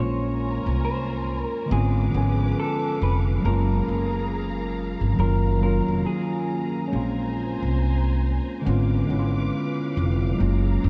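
A woody, pizzicato upright bass sits up front in this melancholic, reflective lo-fi hip hop fragment in Bb minor at 69 BPM with a 16th-note swing, beneath a worn, slightly out-of-tune tine electric piano with light overdrive and cassette grit, a lush bowed string section with vibrato and portamento, and a slightly broken-up, compressed electric guitar melody with subtle chorus that plays until 6.9 s, all drifting through a dreamy, reverb-soaked mix over chords like Bbm9, Db7b9/Ab, Gbmaj9 and Ebm9.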